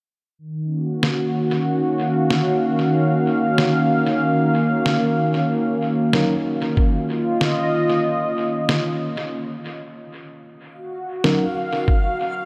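Drenched in cathedral reverb with a 5.1-second tail, this dreamy, hazy fragment of ambient dub, cut from a longer piece, drifts at 94 BPM in Eb minor. A detuned sawtooth pad sits up front, holding a soft-attack Ebm7 chord with chorus and a long release while a filter sweep moves across it, its tone smooth and bright. Sampler-style electronic drums, pitched down and compressed, give the piece a meditative pulse: a muffled, medium-tuned snare carries studio reverb and dub echo, and a thumpy kick sits forward in the mix. A mellow tine electric piano adds brief, clean stabs through a low-pass filter and dub echo, first at 6.1 seconds. After a break that opens at 9.3 seconds, the chord gives way and a reversed granular texture swells in the background from 10.8 seconds, a triangle-toned shimmer with its own reverb.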